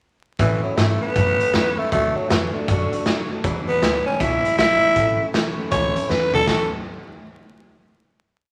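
Rockabilly in a rowdy, retro mood at a swinging 158 BPM in A major: a raspy, growling tenor saxophone sits up front with a vibrato-laden, lick-based theme that returns over an A, D, E7, A progression, backed by a full-bodied picked acoustic guitar strumming eighths in open chord shapes in the background, a woody upright bass walking with thumpy pizzicato, and a gritty, saturated garage drum kit pumping a country two groove in a stone room, all starting at 0.4 s, with a drum fill at 6.1 s leading to a final chord at 6.5 s, set in a large studio reverb with vinyl crackle.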